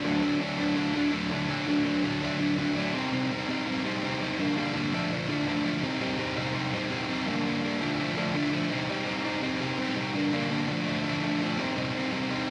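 A small room and a wet studio reverb with a short tail frame this brief punk fragment, cut from a longer piece, with the guitar placed up front. It is a single sludgy, overdriven electric guitar played on its own from start to finish, picked and double-tracked, covering a range from G2 to Eb4. The mood is aggressive and urgent, driven by a fast 166 BPM in a straight 4/4, with the tuning set slightly below standard at A4 = 438 Hz. The opening holds on D before the music moves into a new section at 2.9 seconds. From there the guitar cycles through Cm, Gm and Dm several times, and the fragment lands back on Cm at 11.6 seconds.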